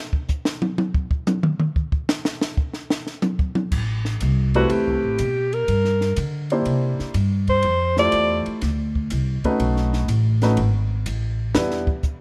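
A breathy, whispered alto saxophone with gentle vibrato carries the solo in this relaxed small-group swing and bop excerpt at 123 BPM, after a compact cocktail drum kit with dark cymbals, a high-tuned snare and a punchy kick opens alone for the first 3.7 seconds. The woody pizzicato upright bass arrives at 3.7 seconds as the tune settles into A minor, joined by a natural-sounding baby grand piano comping through chords such as Am9, Fmaj7 and B7. Close, detailed microphones and little reverb keep every part intimate and up front.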